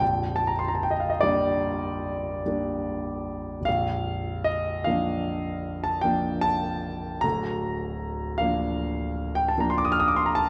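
In a slow, rubato 9/8 lilt at 50 dotted-quarter beats per minute, this brief excerpt of a romantic classical nocturne unfolds on a solo grand piano, mournful and yearning, moving from G minor over a Bb bass to Bb major at 3.7 seconds and to Bb over D at 7.2 seconds. The piano sounds clear, intimate and polished, sitting up front with long sustain and audible action noise as it ranges from the deep Bb0 to F6. A moderate recital hall reverb gives the 10.5 seconds a gentle sense of space.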